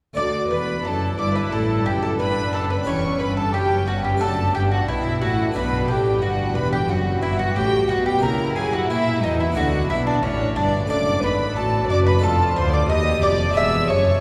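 A wet cathedral reverb with a long 6.1-second tail surrounds this lively, festive baroque-style concerto movement in D major at 90 BPM, cut from a longer piece, where an up-front mellow, round mandolin carries the melody beside a rich, smooth violin section while a dark, woody second violin line sits beneath. A close-miked, dry and brilliant French-style harpsichord, a focused viola section and a warm cello section fill out the background, and a dark double bass section with soft attack anchors the low end. The harmony moves from D through diminished chords and B minor, turning to an F7 at 12.2 seconds before landing on E.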